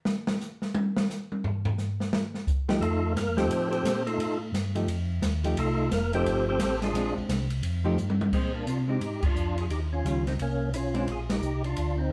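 An open acoustic jazz kit plays alone at the start of this soul jazz organ trio excerpt, with dark cymbals, a medium-tuned snare and a boomy kick sounding airy and polished from up front. At about 2.8 seconds the band arrives: a dark, clean, picked hollow-body electric guitar comps, while a fat, lightly overdriven tonewheel organ takes the melody with percussive third-harmonic attack, key click, chorus vibrato, slow rotary speaker and plate reverb. Beneath it a second tonewheel organ carries the bass line with a mellow, round tone, also treated with chorus vibrato and a slow rotary. The mood is swinging and soulful, with the organ soloing over F9 and Bb9 until a drum fill leads into a new section at 8.3 seconds, where the harmony moves through Bb9, Eb9 and Bbadd9 and the band hits two accents. The room sound is a moderately reverberant studio heard from further back, which gives the trio some space around the up-front parts.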